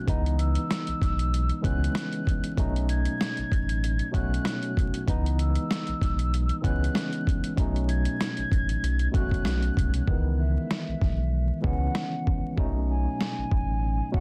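A deep, full sub bass with an octave sits up front with a fast attack and long sustain, anchoring this dark, tough boom-bap hip-hop excerpt at 96 BPM in C# minor, swung on the 16ths over a C#m7 to B9 cycle. Beside it, a gritty, compressed sampler-style kit punches with a thumpy kick, medium-tuned snare and rim click, while a clean tine electric piano carries a cassette-tape tint and a breathy, hollow jazz flute floats distant with vibrato and delay. At 10.1 seconds the hi-hats drop out, and the dense, heavily limited master is dusted with vinyl crackle in a dry room.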